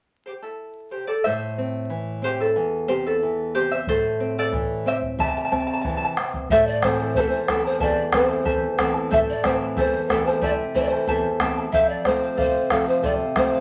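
A straight, even two-beat pulse drives this festive, earthy Andean folk fragment, cut from a longer piece. A fingerpicked charango opens the music alone, its doubled strings shimmering up front, and a bright, classical nylon-string guitar joins shortly after at 1.3 s with fresh-stringed, fingerpicked accompaniment. The charango takes a featured solo passage while a round bombo enters at 3.9 s, giving the ensemble a live-room thump beneath the strings. At 6.5 s a hollow, polished pan flute takes the melody, its pure straight tone marked by a crisp chiff and rolled-off highs, as the harmony settles on A minor before shifting to F. A wet studio reverb and a layer of vinyl crackle lend the recording an aged patina.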